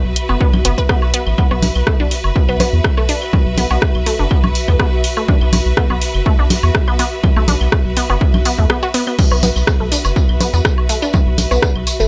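A saturated sub bass and a distant, lush bowed string section open this sparse, cool minimal techno excerpt, both pumping against a dry, punchy, up-front electronic kick, while a squelchy, resonant blip pluck riff with phaser and dub echo joins a punchy analog drum machine's crash, hi-hat and rim click, produced claves, woodblock and congas, and a jingly vintage tambourine that arrives at 9.2 seconds, all in a light reverb.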